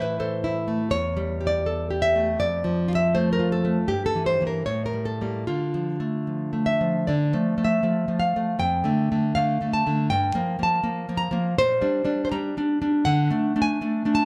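A solo nylon-string guitar, fingerpicked and up front, opens this short, melancholic and passionate romantic classical excerpt in D minor, moving at 80 BPM in 2/4 with a free, rubato feel. Its tone is bright yet full-bodied, with a deep classical character that spans from low E2 up to Bb5, and the harmony settles onto Dm before a second passage from 7.1 s turns toward Gm7 and closes on a bare D5. Close, detailed miking and light reverb keep the sound intimate.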